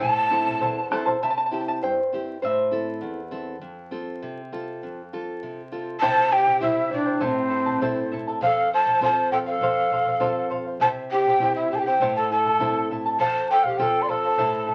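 Andean folk for a small ensemble, melancholic yet festive, taken from a longer piece. A breathy, mellow cane quena leads up front with vibrato and an unsteady, soft-attacked tone. A reedy bamboo pan flute with a bright chiff carries a second line beneath it, while a shimmering charango with double strings and a fingerpicked classical nylon-string guitar with fresh strings and audible finger squeak supply accompaniment, and a deep, dark bombo adds vintage percussion. After a brief opening, the charango takes a solo from 1.2 s, and the full ensemble returns at 6.0 s, all heard through a damp studio room and the crackle of a very old 78 rpm record.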